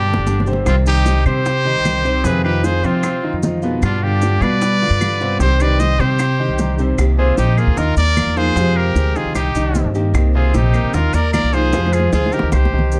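A drum fill and two punchy, vibrato-laden trumpets, a bright lead and a more forceful second line with scooped notes, open this danceable 152 BPM Cuban son and guajira excerpt over a woody pizzicato upright bass up front, joined by a clear vintage grand piano playing arpeggios, round low-tuned bongos, grainy maracas, and a fingerpicked nylon-string guitar and claves set in the background, as the harmony moves from C harmonic minor to C minor at 7.0 s and another fill arrives at 11.7 s, in a dark production with light reverb.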